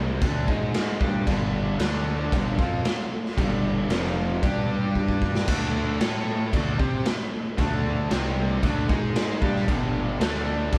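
A straight 4/4 pulse at 114 BPM drives this swaggering, powerful hard rock clip, cut from a longer piece, with a raw garage drum kit up front, its punchy kick, medium-tuned snare and crash sounding saturated and gritty with a rolled-off top, and a fill at 5.0 s leading into a repeat of the opening section. Beneath it, a growly fuzz bass carries the low end while three guitar riffs stack up: a very quiet cranked stack guitar, a hollow-body semi-hollow guitar with spring reverb sitting in the background, and a bright, double-tracked distorted guitar that joins at 1.3 s. The band plays live together in a stone room with moderate reverb, over chords moving around D5, G5 and G#5.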